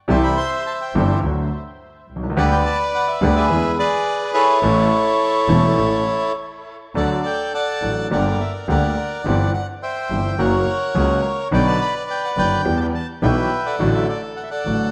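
A dramatic, passionate tango in D major moves at 106 BPM in 4/4 with a rubato feel, in a short passage cut from a longer piece. The bandoneon carries the melody from start to finish, its reedy, dark tone sitting up front with a touch of tape echo and a boxy small-room quality. Beneath it, a clear concert grand piano with deep bass supplies the accompaniment, sounding natural. A single bowed double bass anchors the low end with a rich, smooth, even tone and vibrato, set at a distance. The same phrase is heard twice, the second time beginning at 6.9 seconds, with the harmony shifting from D through G minor and F-sharp to B minor and E minor before settling on D over A. A wet large-studio reverb with a 1.2-second decay surrounds the ensemble.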